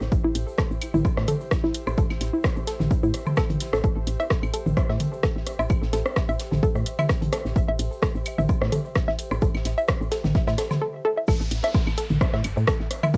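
Minimal techno with a clinical, hypnotic mood, cut from a longer piece and recorded at home on cassette with little reverb, built on a punchy up-front electronic kick, a layered house kit of hats and rim clicks, an organic electronic kit of claves, toms and woodblock re-recorded in a large room, a loose acoustic indie kit and a grainy distant egg shaker in the background, a woody, round FM bass and a hollow, bouncy square pluck riff with chorus and tape echo, both pumping against the kick, all under an airy breathy pad that fades in on Am7 before a short break at 10.8 seconds gives way to a drop on A5 at 11.3 seconds marked by a downlifter.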